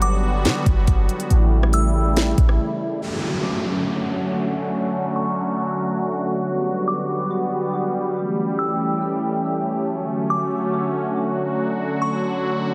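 A half-time trap beat of knocking kick, sharp snare, crisp hats and rim clicks rides a deep, boomy sine 808 until 2.6 seconds, then falls away into a short break, leaving a dreamy, blissful cloud-rap haze where an airy, detuned sawtooth pad pumps under sidechain with chorus through Gmaj7, A7 and Dmaj7 chords, a delicate FM tine bell tinkles in the background through tape echo, a downlifter sinks from 3.0 to 6.4 seconds, and a filter sweep carries the cut to its end in a mix soaked in cathedral reverb.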